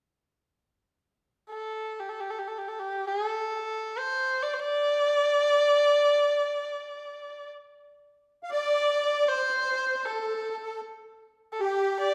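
The recording sits in a wet scoring-stage reverb with a 1.6 s decay, giving this brief cut from a longer Chinese traditional chamber piece a spacious, glowing air. A single bowed erhu enters at 1.5 s and carries the melody alone, its tone rich, nasal and earthy, shaped by light vibrato and sliding portamento between notes in the range from G4 to D5. Though placed up front, the erhu also has a distant quality that suits the tender, graceful mood. At 8.4 s, as the music moves into a second section, a musette accordion joins with a reedy, shimmering second line in its wet musette tuning, reaching from G4 up to F5 and sitting quieter than the erhu. Both instruments play on together until the passage is cut off at 12.1 s.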